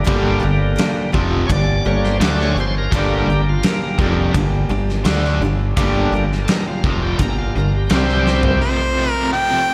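A shouting, bright tonewheel organ, lightly overdriven through a slow rotary speaker, opens this gritty, brooding classic rock excerpt with a solo. Beneath it sit a growling fingered electric bass, overdriven and punchy up front, and a boxy picked acoustic archtop guitar in the background. Almost at once, two overdriven electric guitars, one a cranked stack and the other treated with tremolo, join on a picked riff behind the mix. A big rock drum kit, dark and smooth with a fat snare, plays kick, ride, snare and toms, and adds a fill from 8.3 seconds, shortly after the harmony moves from G minor to a C power chord at 7.9 seconds. At 8.6 seconds the organ, bass, archtop, stack guitar and drums stop, leaving the tremolo guitar under a smooth-topped pop-style harmonica melody over an F chord until 9.7 seconds, all set in a moderate concert hall reverb with a big arena sound.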